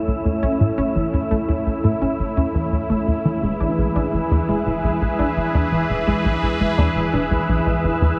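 A steady, straight 4/4 pulse comes from a tight, punchy sawtooth sequencer bass riff, set up front with subtle chorus and delay, while a filter sweep runs across the analog synth bass in this luminous, cosmic slice of sequencer-driven ambient space music cut from a longer piece. Over it, a lush, detuned unison pluck spins delayed arpeggios, a bright, airy resonant pad holds sustained chords with chorus, and a breathy, wind-like tuned noise texture sits in the background. The harmony moves from A to E at 3.4 s, and a barely audible analog drone enters at 5.3 s, all bathed in a vast cathedral reverb.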